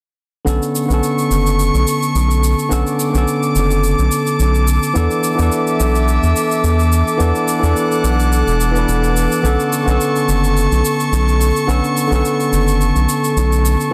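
Dense and heavily limited with a light reverb, this relaxed, smooth sunset chillout excerpt sets a barky, up-front tine electric piano with digital delay over an airy, breathy pad treated with chorus, while a round, deep analog bass carries a filter sweep from 0.5 seconds and an overdriven electronic shaker joins, the whole groove gently swung on sixteenths as the chords move from Bm9 to E7sus4 and back to Bm9.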